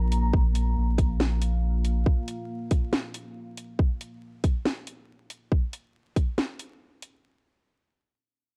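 A dry, gritty hardware sound with vinyl crackle frames this short, meditative and dark deep dubstep fragment, cut from a longer piece and set in a half-time, swung pulse. A moody, warbling pad of detuned sawtooth unison, thickened by chorus and its own reverb, holds slow-attack chords until 5.5 seconds, while a round, soft sub bass sits deep beneath it for only the opening 2.0 seconds. Up front, a tight electronic kick and a garage kit with a cracking snare and bright hats carry the groove, the kick dropping out at 6.3 seconds and the kit continuing to just past 7 seconds.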